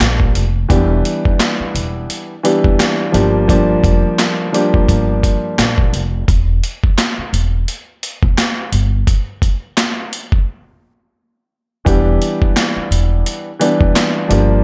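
Boom-bap hip-hop with a reflective, dark mood, this short cut from a longer piece rides a swung sixteenth-note groove in four. A dusky, mellow concert grand piano sits up front, its vintage tone carrying audible action noise and filtered at both ends as it moves between Gm7 and Em7 chords. The piano drops out at 6.0 seconds for a break and returns at 11.8 seconds on Em7. An acoustic upright bass with steel strings plays pizzicato throughout, giving a woody low end. The sampler-style drum kit is compressed, pitched down and gritty, with a thumpy kick, a high-tuned snare, hi-hat and handclaps re-recorded in a large room and placed up front, all under a light reverb.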